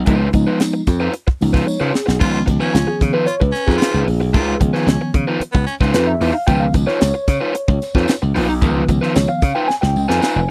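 Gritty and playful, this funk cut moves at 112 BPM in a straight 4/4, sitting in Db mixolydian on a Db9 chord. A punchy, bright slap bass sits up front alongside a tight drum kit with a high-tuned snare and tight kick, while a crunchy overdriven guitar picks out accompaniment above them. A mellow tine electric piano, heard through its built-in speakers, adds stabs and a fill before taking a solo from 2.2 seconds onward. A raspy baritone saxophone with vibrato and scooped notes carries a second line between 2.2 and 5.7 seconds, and a jingly tambourine sits distant in the background in the opening and closing stretches. Drum fills mark the turns, and the dry, close sound recalls a 1970s studio, with the whole passage cut from a longer piece.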